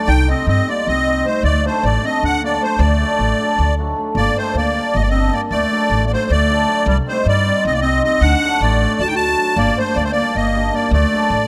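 Driving in 7/8 at 310 eighth-note beats per minute with a straight feel, this fiery, restless Balkan folk excerpt in D phrygian dominant is cut from a longer piece and shifts into a new section at 4.2 seconds, cycling through Cm and Gm chords that each resolve to D. A reedy, shimmering musette accordion carries the melody dry and up front, while a warm, distant clarinet in classical style sings a roomy second line beneath it. A ringing, hammered cimbalom fills in the accompaniment, and a dark, woody pizzicato upright bass sits up front, all captured with close, detailed microphones and light reverb.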